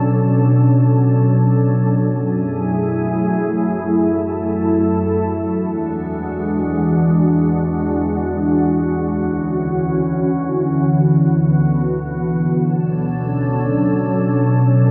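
A glassy FM synth pad plays solo in free time throughout this ethereal, spacious hip hop excerpt in B dorian, its mellow sine tone with a sub octave, slow attack and long release sitting up front under ensemble chorus and a lush hall reverb as the sustained chords move from Bm7 through F#m7, E7 and Dmaj7 before returning to Bm7 at 12.5 seconds.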